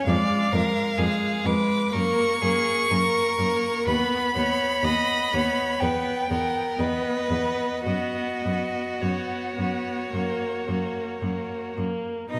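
A rich first violin with vibrato carries the melody up front in this slow, rubato romantic movement for string quartet, serene and tender at 52-66 BPM in 4/4 and cut from a longer piece. A clear second violin sings an even second line beside it, the focused viola sits close with the accompaniment, and an intense cello with a smooth top holds the bass from 0.1 s. A moderate concert hall reverb of 2.3 s surrounds the bowed quartet as the harmony moves from Fdim7 through B/D# and Emmaj7 to a closing F#.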